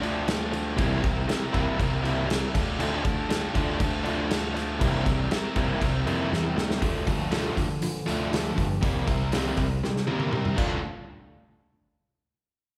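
Moody and bittersweet, this indie rock excerpt in D minor at 119 BPM sets two overdriven, picked electric guitars playing riffs over a fuzzy bass and a loose, gritty, up-front drum kit with dark cymbals and a punchy kick, all captured as a band playing live in one room with a big studio reverb, drum fills at 6.3 and 9.8 seconds, and every part falling silent by 10.8 seconds as the chords shift between Dm and C7.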